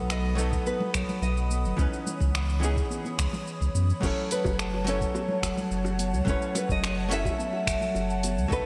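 Relaxed and warm, this short sunset chillout excerpt at 107 BPM in F# dorian sets a full-bodied fingerpicked nylon-string guitar melody over a dark, clean hollow-body jazz guitar with digital delay, an airy, breathy detuned pad with chorus, a round, deep analog bass up front, a gritty, thumpy electronic kick entering at 0.5 seconds, an overdriven deep house kit of cabasa, crash, finger snaps and hi-hat with gated reverb, and soft-handed vintage congas and bongos in the background, all moving through B7, C#m9 and F#m7 inside a lush hall reverb and bright 1980s-style digital production.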